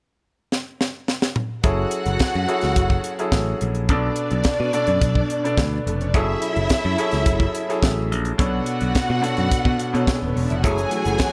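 Disco with a sultry, danceable feel, this cut from a longer piece opens with a tight funk drum kit playing a fill from 0.5 seconds, its high-tuned snare and tight kick dry and up front. At 1.6 seconds the groove settles in as a growly, directly amped picked electric bass, a brilliant baby grand piano with long sustain, and a lush symphonic string section arrive together, the bowed strings carrying a soft-attack second line with expressive vibrato. The harmony sways between F#m9 and Bm7, giving the passage a smoky, seductive lean. Near 10.6 seconds a clean, fingered electric guitar with subtle chorus and a dark, woody studio string section holding sustained chords slip in from the background, soon joined by a grainy egg shaker. A studio reverb adds a polished sheen around the ensemble.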